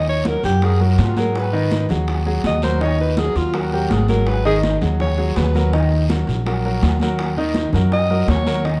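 A breathy alto saxophone leads this fiery, sophisticated Afro-Cuban jazz excerpt at 164 BPM in a straight 4/4, soloing with vibrato and scooped notes over a clear, up-front concert grand piano and a woody pizzicato upright bass with steel strings. Congas with a bright, thin, high-tuned skin sit close and dry in the background, while low-tuned bongos sound round and distant in a large room, struck with hard hands. A raspy guiro joins at 0.3 seconds from a small room. The harmony holds on Abm7 before moving to Ebm at 5.7 seconds, where the saxophone pauses and the piano's deep bass and the prominent upright carry the groove until the horn returns at 7.9 seconds. The production is dark and warm, with light reverb, and the piece cuts off mid-flow as part of a longer performance.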